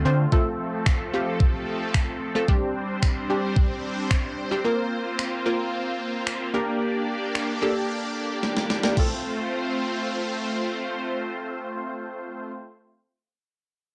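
Euphoric, summery dance-pop excerpt in which an evolving, detuned supersaw swell holds sustained chords up front while a punchy, wave-folded chord stab with chorus plucks bright accompaniment, both pumping to the sidechain, over a thumpy, tape-warm 12-bit drum machine of kick, snare, snaps and crash that plays a fill at 8.4 seconds and stops at 9.1 seconds, the whole set in a small room with the character of a home cassette recording.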